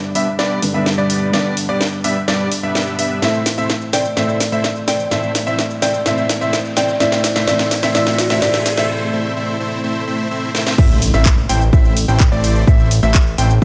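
A lush hall sheen wraps this euphoric, powerful festival progressive house passage at 127 BPM in A minor, where a soft felt-muted upright piano and brilliant concert grand arpeggios pump alongside a huge, gritty detuned supersaw riff under a filter sweep and up-front house drums with cracking snare, a woody ringing kalimba melody arrives at 3.9 seconds and a very quiet riser leads through a break into the drop at 10.8 seconds, when a punchy electronic kick and fat, thick analog bass join in.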